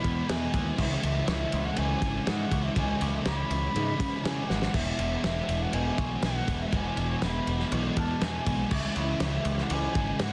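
Blissful and hazy, this short excerpt of shoegaze-tinged dream pop rock moves in a straight 4/4, swaying between E and C#m chords. A concert flute carries the melody high above the band, its pure, soft-attacked tone shaded with vibrato and trailed by analog delay. A crunchy overdriven electric guitar sits up front playing a picked riff, thickened by analog chorus, while a growling picked electric bass adds a bright, overdriven low end. The loose indie drum kit has a lo-fi, muffled small-room sound, with dark cymbals, a fat snare and a punchy kick softly clipped. It also sits up front and plays a fill at 4.5 seconds. The mix is dry, dense and heavily limited, giving the whole a modern, compressed sheen.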